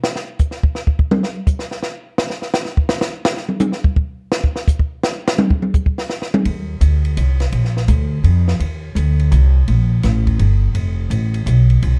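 Swinging at 168 BPM in 3/4, this short modal jazz excerpt, cut from a longer performance, sits in Eb lydian, with a compact cocktail drum kit taking a solo for the first 6.5 seconds across hi-hat, ride, snare, toms and kick, its sound dry and up front, with dark cymbals, a high-tuned snare and a punchy kick. At 6.5 seconds a pizzicato upright bass enters, woody and close with steel strings, moving between F1 and F2 while the drums continue until 11.9 seconds. The mood is hypnotic and spiritual, set in a dark production with light reverb.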